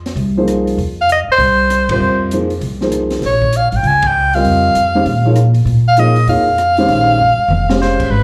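Heard through a club's PA with a moderate, short room reverb, this live modal jazz excerpt moves at a brisk 197 BPM in 4/4 with a swung eighth-note feel and a searching, cool mood. A woody upright bass, played pizzicato and sitting up front, anchors the group while an acoustic kit with dark cymbals, a medium-tuned snare and a boomy kick sits lower in the mix, using ride, hi-hat, crash, rim click and toms. A dark, mellow grand piano with a deep, smooth, vintage character enters at 0.4 seconds to comp, touched by plate reverb and slapback echo. At 1.0 seconds a clear soprano saxophone takes the lead with vibrato and scooped notes, its solo line carried by the same plate reverb and slapback echo. The harmony shifts from Fm9 to Bbm9, the band hits accents together, and a drum fill near 7.2 seconds closes the passage.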